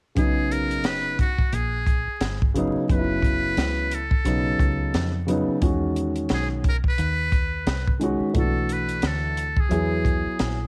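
Warm and smooth, this short jazz-hop cut from a longer hip hop piece sits at 88 BPM in B major with a swung 16th-note feel. A dark, woody upright piano with a slightly detuned, vintage tone carries the chords up front, moving from B6 through F#5, B7 and Emaj7 to Bm7 and E. A buzzy, thin trumpet with a metal mute plays the soft-attacked solo melody over a round, foam-muted dub bass with tube saturation and a dry, compact cocktail kit with a punchy kick and high-tuned snare. The piano, trumpet and drums carry a cassette tape tint, and the whole room is close and dry with vinyl crackle.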